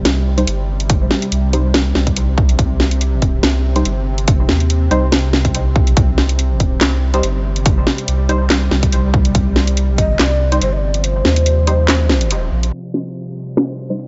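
Cavernous and brooding, this deep dubstep passage moves in a swung, half-time feel over a single minor chord. A tense, string-like drone of detuned sawtooth layers, ring modulation and vibrato sustains through its own reverb, while a soft, round sub bass sits up front. A garage kit of handclaps, low-pass-filtered hi-hat and a cracking, filtered snare pairs with a punchy, tape-warm electronic kick, as muted, detuned chord stabs pluck through chorus and dub echo. At 10.0 seconds a breathy bamboo shakuhachi enters with a hollow, chiffy tone and dub echo, and the kick drops out at 11.0 seconds. A filter sweep from 12.7 seconds closes the passage, heard in a dark, low-passed digital ambience.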